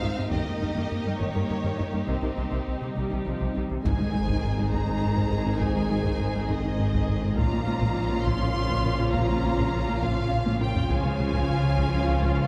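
Moving in a straight 6/8 at 68 BPM, this vast, brooding hybrid orchestral and electronic film cue, cut from a longer piece, sets a lush, vibrato-rich violin melody over a smooth second violin line, a dark viola section with portamento, and a rich cello and double bass foundation, while a rubbery, hollow square-wave bass riff sits alongside a glassy FM pad and soft, round pluck arpeggios; hard-stick taiko enter at 0.3 seconds, and from about 3.8 seconds mellow trombone and French horn chords, a deep sub bass and a faint electronic impact arrive as the harmony moves from Ab toward Db, with a drum fill at 10.5 seconds, in a wet concert hall reverb.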